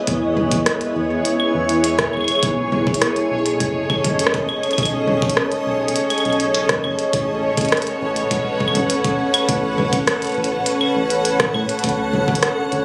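A blurred, detuned granular cloud pad sits up front in this playful, wistful IDM excerpt, holding slowly evolving chords that drift from E through B13 and A69 to Dmaj7. A glitchy electronic kit of clicky hats, claves, rim clicks and toms, re-recorded in a small room, rattles over a gritty, pitched-up thumpy kick and a deep, round analog bass. A resonant, bubbling sawtooth texture with random filter steps and chorus hovers quietly behind, the whole piece heard as if captured on a phone in a club with light reverb.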